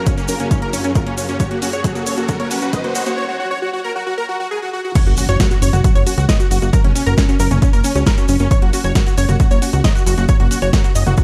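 Uplifting trance at 135 BPM in F# major, this soaring excerpt from a longer piece opens on a build-up where a huge, thick, detuned supersaw carries the melody over lush unison pluck arpeggios, both pumping to the sidechain and trailing dub echo. Dark, bowed studio strings hold sustained chords with a soft attack and expressive vibrato, but only until 3.1 seconds, while a background riser climbs and the big-room kit, with its layered, huge snare, rolls through a fill. A punchy, tape-warm electronic kick sits up front from the start, joined by a grainy, bright tube shaker tucked behind the mix. The drop lands at 5.0 seconds with an electronic impact, bringing in a round, chorused analog pluck as a second line behind the melody and a funky, plucky analog bass with a fast, decaying filter attack, also up front. The production is dark overall, with light reverb and a trimmed low end.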